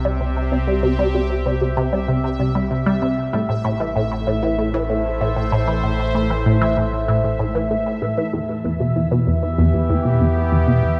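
Mysterious and cosmic, this ambient stretch of sequencer-driven space music moves through C, A minor and E minor as a bright, evolving sawtooth pad with a slow filter swell fades in up front, washed in chorus and shimmer reverb. Beneath it sits a round, deep analog bass, while a bubbling texture of random resonant filter steps glimmers high above. Most prominent is a juicy, squelchy blip pluck riff with ring modulation, a fast attack and short decay, coloured by phaser, tape echo and shimmer, all set in an echo-heavy mix with a wet spring reverb.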